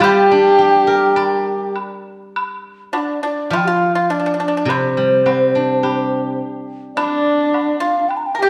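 An airy, mellow xiao carries the melody, with vibrato and crisp attacks, over a mellow, tongued low xiao, a dry, percussive pipa and a silvery, ringing steel-string zither, while a bright woodblock keeps time. This is graceful, wistful Chinese traditional chamber music in G yu mode, cut from a longer piece and moving at a rubato 104 BPM. A husky, nasal horsehead fiddle with earthy portamento sounds at the start, falls away at 1.8 seconds and returns at 7.0 seconds just as the zither stops, all softened by a moderate recital-hall reverb and the warbling pitch drift of worn cassette tape.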